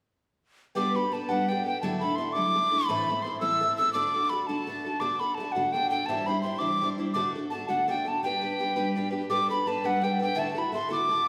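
A mellow, hollow tin whistle with airy chiff and vibrato carries the tongued melody up front in this lively, bright Celtic jig at 112 BPM in 6/8 and G major, while a picked twelve-string acoustic guitar adds shimmering octave-doubled chords with finger squeak from 0.8 seconds, all set in the resonant reverb of a recital hall in an excerpt cut from a longer piece.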